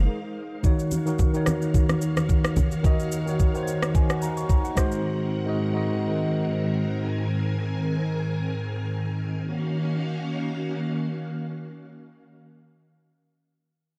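Hypnotic and soulful, this amapiano excerpt moves at 109 BPM in Eb dorian with a light 16th-note swing, opening on a brief break through which shimmering, full-bodied string-machine violins with ensemble chorus and sidechain pumping already carry soft-attack sustained chords over Ab7 and Ebm7. A clean tine electric piano plays accompaniment through its built-in speakers up front. A smooth R&B kit of knocking kick, rim click and shaker runs from 0.6 to 5.0 seconds, with bright, low-tuned congas sitting in the background, all set in a dark production with a lush hall reverb.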